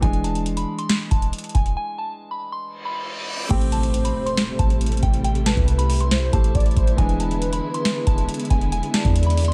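A booming analog drum machine leads this eerie, hard-hitting trap excerpt, its deep kick, crisp snare, metallic hats and crash cymbal sitting up front with a tape-warm tint and vintage 12-bit sampler grit. Set at 138 BPM in a half-time 4/4 feel in A minor, the beat rides on a clean, sine-like 808-style bass that hits fast and decays into dark, boomy lows. Above it, a soft FM synth bell carries a pure, gentle melody through chorus and a low-pass filter, while a felt-muted upright piano adds intimate, mellow accompaniment with audible action noise. A break arrives at 1.8 seconds, and an electronic reverse cymbal from 2.8 seconds rises into an impact at 3.5 seconds, where the harmony moves from E7 to Am7 and the second section begins. There a velvety, detuned sawtooth synth lead joins as a sliding second line with chorus and delay, and a dark studio string section lays lush, woody bowed chords beneath, all in a dry, close-sounding room.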